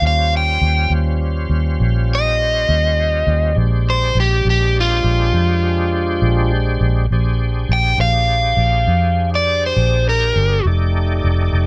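A slow blues pulses in 12/8 at 68 beats per minute with a straight, laid-back feel, giving this gritty excerpt from a longer piece in Bb mixolydian an unhurried sway. An overdriven electric guitar takes the solo up front, its crunchy, picked tone carrying the melody from the opening until it drops out at 10.6 seconds. Underneath, a bright tonewheel organ holds sustained chords, sounding full and shouting with light overdrive, chorus vibrato, audible key click and a slow rotary speaker. A vintage muted electric bass, played with the fingers, sits up front with a dark, round, foam-muted tone. The harmony moves from Eb13 to Bb13 at 3.6 seconds and reaches F13 just before the close, all in a dry room with little reverb.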